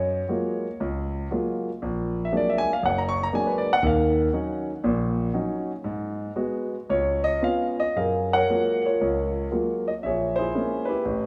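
A concert grand piano opens this short solo jazz passage, cut from a longer piece, with an intimate, up-front tone, deep bass and long sustain, the mechanical noise of its action audible. The mood is late-night and moody, set at 118 BPM in 4/4 with a swung eighth-note feel and a rubato freedom. The harmony moves from Gbmaj9 through Bbaug7, Ebm7, Abm7 and Db7, then a new section begins at 8.0 seconds, returning to Gbmaj9 before settling on Bbm7b5 at 10.0 seconds. The piano spans a broad range from the low bass to the upper treble, and its natural, unforced character sits in a moderate, lush hall reverb. Around it, the rough home-demo mix carries a small room ambience that keeps the sound close and personal.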